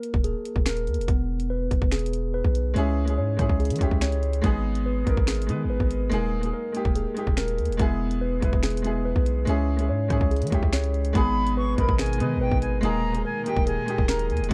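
Tense and menacing, this drill excerpt moves at 143 BPM with a half-time feel in G# harmonic minor. A mellow tine electric piano plays arpeggios through delay over a hard-clipped kick, sharp snare, bright hats, finger snaps and rim clicks, with a deep, decaying 808-style bass up front and a worn, boxy grand piano adding accompaniment from 2.7 seconds. At 11.2 seconds a close-miked, straight-toned silver flute with delay takes a second line while a soft, breathy pad with chorus sits in the background, all within a dark production with light reverb.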